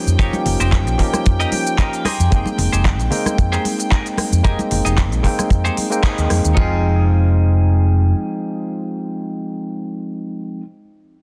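Nu-disco with a groovy, cosmic mood, built on a swung sixteenth-note feel in 4/4. A dry, polished 70s drum kit with a tight kick, ride cymbal, toms and a soft-clipped snare sits up front, layered with a crisp, tape-tinged electronic pop kit of cabasa, handclaps, hi-hat and rim click, while close, thin-skinned congas sit in the background. A dark, round fingered electric bass anchors the groove, and a barky tine electric piano comps through sidechain pumping and tape echo. A twangy, clean electric guitar plays a picked riff bathed in lush chorus and echo, adding fills at 1.3 and 5.8 seconds, as a reedy chamber string section holds gut-string chords behind the band. After a full-band accent at 6.0 seconds the drums, strings and congas drop away, leaving the piano and guitar to carry on over a minor seventh chord once the bass stops at 8.1 seconds.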